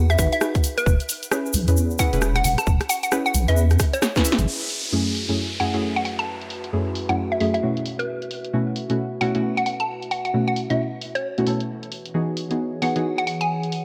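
Moody yet bouncy, this two-step garage excerpt swings over a deep, wobbling bass and a tight, layered electronic kick, both sitting up front. A punchy analog drum machine adds tape-warm hi-hat, rim click and snare, with a low-pass filter softening the hats and snare, while a grainy, bright tube shaker brings a small-room texture. Mellow, full-bodied chord stabs with detuned sawtooth edges and a filter sweep carry chorus and tape echo through Emaj9, F#m7 and B9sus4. A hollow, detuned square-wave pluck plays the melody through the same echo. During a drum fill from 4.0 seconds, the kick drops out at 4.2 seconds, and the bass and shaker stop at 4.5 seconds as a downlifter enters. At 5.2 seconds a warbling, nostalgic lo-fi pad with a slow attack, built-in reverb and sidechain pumping settles beneath the stabs in a lightly reverberant space.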